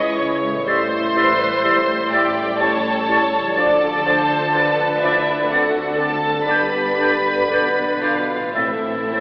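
In a rubato 3/4 that drifts between 48 and 63 BPM, this slow romantic orchestral movement unfolds with a tender, warm mood in a 9.2-second fragment of a longer piece. A lush violin section carries the melody up high, its vibrato smooth and even. Above it a mellow, airy concert flute holds a straight-toned second line, joined by a clear oboe with light vibrato, a punchy but very quiet clarinet, and a second violin section that sounds expressive and distant behind the others. Beneath them a focused viola section and a very quiet bassoon fill out the accompaniment, a roomy French horn section holds sustained chords in the background, and a fingerpicked concert harp rings out arpeggios, while cello and double bass sections supply a soft, set-back bass. The harmony moves from C#m through Am7, A7, Dm and D7 to G before settling on Am at 8.6 seconds, and the sound is bathed in wet church reverb and filtered through a thin AM radio tone.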